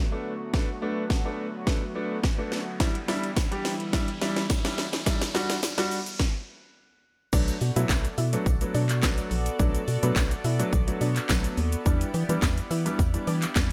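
Confident yet bittersweet, this 106 BPM dance-pop cut in B minor opens with a shimmering, chorused pulse-width pad pumping alongside a smooth vintage grand piano, punchy layered house drums with cracking snare, claps, hi-hat, shaker and crash, a faint jingly tambourine from 2.8 s, and a background riser leading into a stop at 6.2 s, before the drop at 7.3 s brings in a hollow, dark, organ-like FM bass and a soft, round pluck melody with chorus and tape echo sitting behind, over Bm7 and Em7 chords in light reverb.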